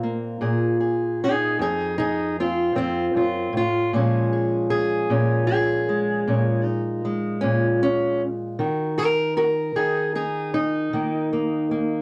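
A lone fingerpicked steel-string acoustic guitar opens this soulful, smoky fragment of acoustic country blues, its dark, boxy parlour tone sitting up front over a slow 12/8 at 51 BPM in Bb minor, tuned to A4 = 438 Hz. After an opening passage moving from Bb9sus4 to F7, the guitar takes a solo from 3.9 seconds, settling on Bbm7 and then Ebm at 8.6 seconds. A modest small-room reverb and the worn, warbling pitch drift of old cassette tape lend the recording an aged, intimate character.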